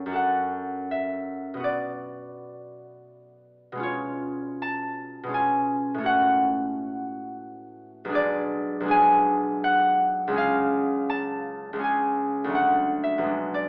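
Heard through a thin AM radio sound with a light touch of reverb, this 13.7-second cut from a longer classical piece features a solo concert harp, up front, ringing and fingerpicked, spanning B1 to A5. The gentle, mysterious music sits in F# minor and 3/4, with a rubato feel drifting between 74 and 87 BPM and tuning at A4 = 441 Hz. Its harmony moves from F#m through Bm, C#7/B and G#dim/B to C# before settling on D at 12.6 seconds.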